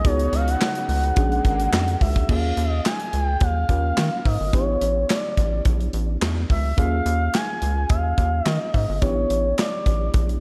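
An expressive, smooth sawtooth synth lead with chorus, slapback echo and analog delay carries the melody up front in this funky, late-night early-eighties boogie funk cut at 107 BPM, over a rubbery, bouncy square bass, a punchy modern studio drum kit with bright cymbals and handclaps, a warbling FM electric piano with slapback echo, and a brassy detuned analog pad that holds sustained chords only until 2.3 seconds, all sitting in light reverb as the harmony moves through suspended ninth chords such as Eb9sus4 and A9sus4.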